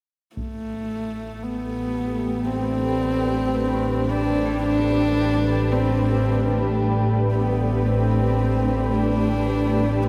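This cavernous, desolate dark ambient drone, cut from a longer piece, opens at 0.4 seconds with a brief, band-limited taiko hit from heavy sticks, filtered and set far in the background, as a single player on horsehead fiddle begins the melody. The fiddle sits up front, intimate and husky, with an airy bow on horsehair strings, light vibrato, soft attacks and gliding portamento, trailed by a delay. Moments later a mellow analog drone settles in low and up front, its sawtooth, pulse and triangle tones shifting through pulse-width and ring modulation under a chorus. From 1.5 seconds a bright granular cloud pad adds blurred, detuned sustained chords with slow attacks and its own reverb, all resting on a single Amadd9 harmony. At 3.7 seconds very quiet tubular bells, dry, close-miked and struck with a plastic hammer, ring out solemn metallic arpeggios, and the whole mix is bathed in a huge, wet ambient reverb with a long tail.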